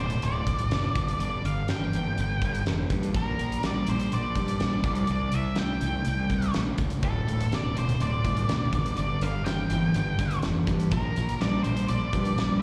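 A gritty, swaggering stretch of live classic rock opens with an octave-fuzz lead guitar carrying the melody over a sludgy distorted guitar riff, a round, up-front fuzz bass played with the fingers, and a big rock drum kit with a fat snare, punchy kick and hi-hat in a dark, roomy acoustic sound. At 7.0 seconds a second overdriven, picked guitar joins the riff in the background, thickening the chord cycle built on D5, G5, Bb and C5. The lead guitar is coloured with slapback and tape echo, and the whole performance comes through a venue's PA with light recital-hall reverb, cut from a longer piece.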